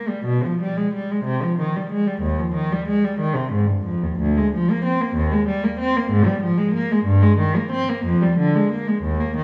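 A single bowed cello carries this brief classical passage, played alone from 0.0 to 9.4 s in the manner of a baroque-style suite movement, and it is cut from a longer piece. Its tone is warm and expressive, with vibrato and portamento shaping the line as it moves between D2 and C4. The mood is introspective and solemn, set in 6/8 at around 61 dotted-quarter beats per minute, with uneven beats and rubato giving the pulse a free, speaking quality. The player sits up front, yet the sound also feels somewhat distant, surrounded by the wet reverb of a recital hall or church with a 1.3-second decay.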